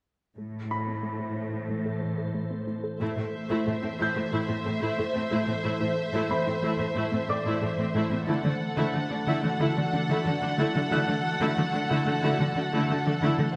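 A straight 91 BPM pulse in 4/4 drives this tense, relentless cinematic cue in A dorian, where a rich cello section anchors the bass from 0.4 seconds beneath squelchy, very quiet resonant pluck arpeggios, a bright baby grand piano with digital delay adds polished high texture, and a glassy FM pad with ensemble chorus, phaser and low-pass filter holds ethereal chords in the background, before lush vibrato violins and focused violas enter at 3.0 seconds to begin a build-up, moving from Am to Dadd9 at 8.3 seconds in a wet concert hall.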